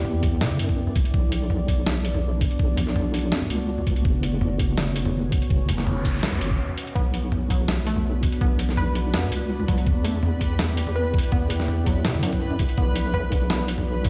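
A deep, moody pad and a wobbling, square-wave bass open this tense, spacious half-time drum and bass excerpt in B minor at 165 BPM, with a gritty, pitched-down sampler-style kit of hi-hat, medium-tuned snare and toms sitting up front. A knocking, tape-warm electronic kick joins at 0.2 seconds, both drum parts carrying studio reverb, while the detuned bass, thickened with chorus and tube saturation, holds the low end. The vintage, slow-attack pad sustains chords from Em7 through Bm and F#sus4, pumping with sidechain, chorus and its own reverb. An electronic noise sweep leads into a brief break before 7.0 seconds, where a lo-fi, wave-folded pluck begins arpeggios with chorus and digital delay, its filter sweep making it feel evolving. Soon after, a reversed, granular texture swells on a single bright, dreamy note, and the whole mix sounds as if played on a big system in a bare stone room.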